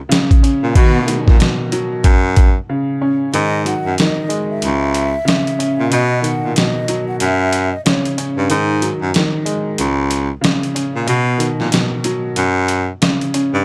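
A dry, close sound frames this tough, reflective boom-bap hip-hop excerpt with a swung feel: a gritty, compressed sampler-style kit with a thumpy kick sits up front beside a woody, slightly detuned upright piano and a clear baritone saxophone that carries the bass line with vibrato. A brief burst of bowed studio strings with analog delay appears in the background from 0.8 to 1.2 s. After a break around 2.7 s, a breathy, hollow concert flute takes the melody from 3.3 to 8.1 s.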